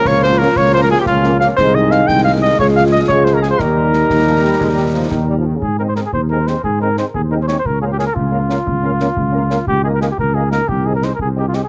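A mellow cornet carries the melody up front with light vibrato and a soft attack, its tone tinted by cassette tape and an analog delay. This rousing, spirited military-style march for wind band moves in 6/8 at 118 BPM in Ab major, a short cut from a longer piece recorded at home on cassette with light reverb. A smooth-topped tuba anchors the bass just as prominently, while a loose, vintage-sounding French horn section fills in accompaniment in the background and a very quiet woodwind section adds an ensemble second line. For roughly the first five seconds, a crisp, bright piccolo, a hushed euphonium and a tight trombone section holding sustained chords thicken the texture, before they drop away as the second section begins at 5.6 seconds. Concert snare drum, concert bass drum and clash cymbals play close and dry throughout, the cymbals dark and the drums also carrying a cassette tint.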